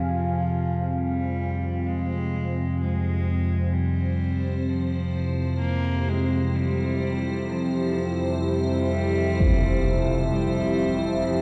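A rich, reedy bowed cello fades in with tape echo over a chorused analog drone and a deep, detuned pad moving from Fm to C at 64 BPM, while an icy glass pad enters at 4.4 seconds and a huge impact strikes at 9.4 seconds in this dark, cavernous ambient drone bathed in cathedral reverb.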